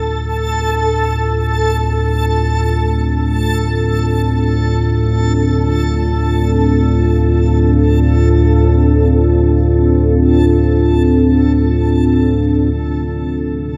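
Unsettling and desolate, this dark ambient drone drifts in free time, cut from a longer piece and lasting under 14 seconds. A deep rumbling drone sits up front throughout, its detuned, wave-folded tone ominous and heavy, fading in over the first 12.7 seconds with its own built-in reverb. Above it, a dark analog pad holds sustained chords built on a D5 power chord, full-bodied and moody with a sub octave and a chorus effect, fading in over the same span. A reversed, granular texture swells on a single high note with a brighter, dreamy shimmer and built-in reverb, stopping at 12.8 seconds while the drone and pad carry on to the end. The whole piece is bathed in a cavernous cathedral reverb with a long, slow-decaying tail that deepens the sense of emptiness.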